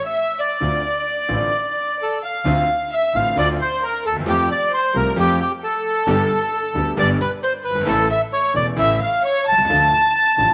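Tango in D minor at 132 BPM with a dramatic, tense rubato feel, led by a reedy, dark bandoneon up front while a bowed violin with vibrato and expressive portamento traces a soft-attacked second line in the background; a bright, brilliant concert grand with deep bass and a clear, focused bowed double bass join at 0.6 s, and a very quiet, floating sul tasto string section adds pure, hushed stabs from 2.5 s as the harmony moves from Dm7 through Fadd9, G and A to Dm, set in echo chamber reverb and small room ambience with vinyl crackle in this excerpt cut from a longer piece.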